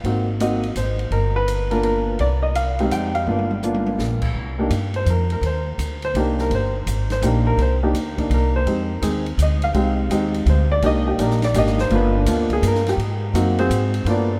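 Jazz piano trio in a smoky, cool 3/4 swing, where an intimate baby grand with audible action noise and short sustain carries the melody up front, a woody pizzicato upright bass sits close beside it, and a dark-cymballed drum kit with a boomy kick plays a fill from 3.3 to 4.0 seconds before the piano takes a solo from 4.3 seconds, all inside the long echo of a vast cathedral-like space.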